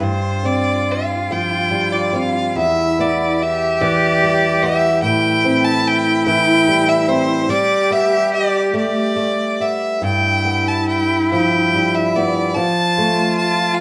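A clear fiddle, a bowed cello and a fingerpicked flamenco guitar begin together at 0.0 seconds in this longing, mournful Celtic slow air, cut from a longer piece and tuned to A4 = 439 Hz. The fiddle carries the melody between C5 and A5, sitting up front with a smooth, even tone and light vibrato. Beneath it, the cello holds a focused second line from E4 to G4, its single bowed voice shaded with vibrato. The acoustic guitar is boxy and warm, up front with flamenco colour and audible finger squeak, spanning E2 to C4 as it accompanies through G7sus4, Em7, Am7, Gadd9 and G7 before reaching F at 12.6 seconds. The rubato 6/8 pulse hovers around 48 dotted-quarter beats per minute, and the trio plays live in one room with a moderate stone-room reverb of 1.3 seconds.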